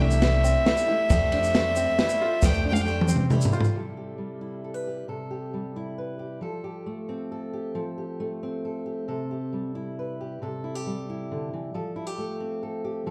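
Indie folk in three-quarter time, nostalgic and anthemic, heard live through a club PA with light reverb. A nasal, reedy bowed fiddle carries the melody up front over a full-bodied picked dreadnought guitar, mellow upright piano arpeggios, a woody, growly pizzicato upright bass, a grainy tube shaker and a compact cocktail drum kit with a high-tuned snare and punchy kick, which plays a fill from 2.4 seconds. Slapback echo touches the fiddle, guitar and piano. At 3.7 seconds a dark, fingerpicked auditorium guitar with slapback echo enters and carries the accompaniment alone through the rest of the excerpt over the C6 and Fadd9 changes.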